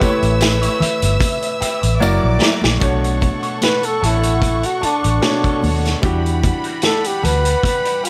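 A breathy, whispered flugelhorn carries the melody of this silky, cinematic 1970s-style soul excerpt in B minor at 75 BPM, taking a solo from 2.8 seconds after a drum fill on a gritty vintage kit with a punchy kick. Lush bowed strings with vibrato sing a second line over clear, polished grand piano, while a round, foam-muted electric bass enters at 0.2 seconds and a dark guitar riff, slightly broken-up through wah and chorus, sits in the background. Damped congas and a very quiet, jingly tambourine fill out the percussion under light reverb, as the chords move from A7 and F#7b13 to Bm9 and Em9.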